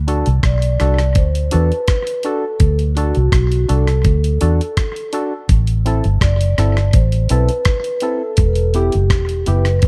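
A dark, warm production with a digital ambience frames this laid-back roots reggae excerpt, built on an up-front, round and foam-muted vintage electric bass and a gritty, compressed sampler-style drum kit with a thumpy kick, hi-hat and rim click. Hollow, percussive organ stabs with a chorus sheen sit behind a mellow, metallic vibraphone melody played with soft mallets and trailed by tape echo. The harmony moves from D to Am at 5.5 seconds and on to Em at 8.4 seconds.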